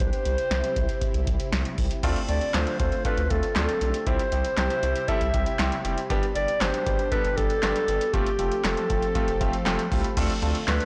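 Synth-pop with a cool, melancholic mood, cut from a longer piece, where a mellow clarinet carries the melody with a slapback echo over a swirling, detuned analog pad of phased and chorused chords and a round, dark analog bass. An electro analog drum machine sits up front with a deep kick, punchy snare, metallic hats, handclaps and crash. A concert grand piano with audible action noise joins at 2.0 seconds, plays a fill from 9.2 seconds, and a downlifter murmurs in the background at 10.2 seconds, all within a moderate plate reverb and a blown-out, overdriven recording.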